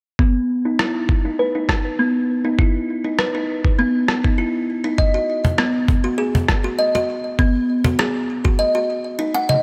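A bright, plucked kalimba carries this hypnotic, meditative slice of organic downtempo, its short thumbnail plucks and hollow-box tone spinning arpeggios through a low-pass filter and delay, with a filter sweep running across its whole span from 0.2 to 9.6 seconds. Beneath it sits a gritty, thumpy electronic kick, compressed and sampler-style, with a tape-warm character from being re-recorded in a small room. A dusty soul sampler-style drum kit adds rim clicks and toms with the same compressed, tape-warm grit, laid over a gentle swing on the sixteenths. At 5.4 seconds a woody acoustic cajon joins, struck with hard hands and carrying faint snares, before dropping out at 8.6 seconds. The parts sit up front in the mix, wrapped in light reverb and a digital ambience, giving this fragment of a longer piece a close, intimate feel.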